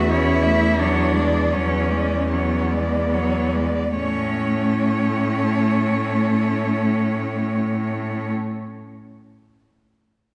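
Classical writing for cello ensemble, lyrical and serene, moves at a very slow 35-45 BPM in 4/4 with a rubato feel in A major, slowing through its opening 3.9 seconds as the harmony passes from A/E to E13 and settles on A at 3.9 seconds. Four bowed cellos, each a single player and all rich with vibrato, share the texture: a close-sounding melody sits high above a second line and a close accompaniment, these three focused in tone, while the bass cello is smooth and even, distant in tone yet up front in the balance. A wet concert-hall reverb with a 1.9-second decay surrounds this short fragment of a longer piece.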